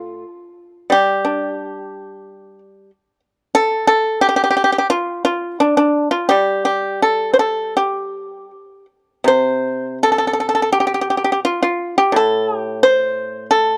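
A solo pipa, played with fingerpicks, opens this short excerpt of Chinese traditional music and carries it alone for the full 13.8 seconds, spanning from A2 up to C5. Its tone is mellow yet percussive, sitting dry and up front in a small room, with the close feel of a 1970s-style studio recording. The rubato pacing drifts between 78 and 93 BPM in 4/4, giving the playing a longing, contemplative mood.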